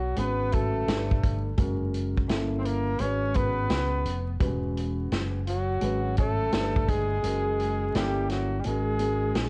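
A mellow, scooped flugelhorn melody and a breathy, whispered tenor saxophone line, both bathed in plate reverb, open this cool, smoky jazz-hop excerpt over a round, amped fingered bass. A dark, woody upright piano with audible action noise and a vintage drum kit with a punchy kick join at 0.2 seconds, though the kick drops out from 7.2 seconds, and the whole track carries the warble, pitch drift and vinyl crackle of worn cassette tape.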